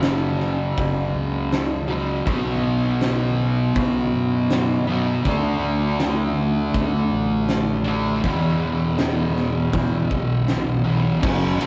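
A rough rehearsal-room recording with a wet booth ambience frames this melancholic, brooding shoegaze and dream-pop rock excerpt at 80 BPM in 4/4, where an up-front, double-tracked fuzz guitar riff with dark, compressed distortion moves through F#5, B5, D5 and E5 over a growling, bright, overdriven fingered electric bass and a big-room acoustic rock kit of fat snare, punchy kick, hi-hat, crash and ride, all three parts playing from start to finish.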